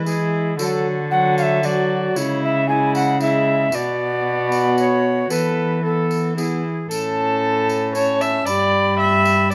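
A mellow tenor recorder carries the melody in this courtly, festive renaissance-style consort dance in triple time, its airy wooden tone marked by vibrato, tongued notes with a chiff, and rolled-off highs. Beneath it, a single bowed viola sits up front with the second line, its gut-string, period-style sound reedy and smooth on top. A close-miked trombone with light vibrato fills in the accompaniment, while one bowed cello plays the bass with a nasal, reedy gut-string character. A jingly, bright tambourine joins at 0.1 s, its vintage, band-limited shimmer kept low in the mix. The harmony moves through E, D, C#m, Bm and Esus4 before settling on A at 6.9 s, where a new section begins, then shifts to G near the close of this excerpt, which is cut from a longer piece and carried in a moderate stone room.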